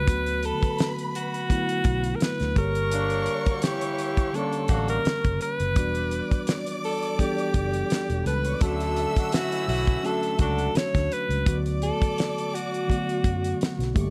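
A light reverb and the ambience of a small room frame this short cut from a lush, smooth 1970s-style soul piece, with a dry, damped drum kit sitting up front: fat snare, tight kick and hi-hat carrying a gently swung sixteenth-note feel. A bright alto saxophone with vibrato takes the solo melody, also placed close to the listener. Beneath it, a mellow tine electric piano gives clean, direct accompaniment, while a vintage fingered electric bass, dark, foam-muted, round and punchy, anchors the low end. A rich studio violin section adds an expressive bowed second line high above, and from 2.9 to 10.7 seconds a distant, roomy horn section, doubled in octaves, plays stabs. The harmony moves from Bm7 through Gm, Em9 and Dmaj7 before arriving on Bm7/D.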